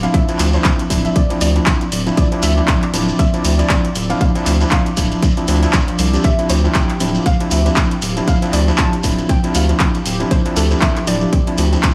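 Warm and hypnotic, this deep house excerpt moves at 118 BPM with a swung 4/4 groove in D minor, resting on a single Dm9 chord. Overdriven house handclaps and hi-hat open the excerpt, joined at 0.1 seconds by a punchy, overdriven electronic kick, while a deep, round analog bass sits up front with sidechain pumping. A barky, gritty tine electric piano plays stabs through a combo amp with pumping and dub echo, and a very quiet, smooth, detuned pad holds sustained chords. A soft pluck carries the melody in the background with subtle chorus and dub echo, and a grainy, distant shekere adds percussion in a dry studio sound.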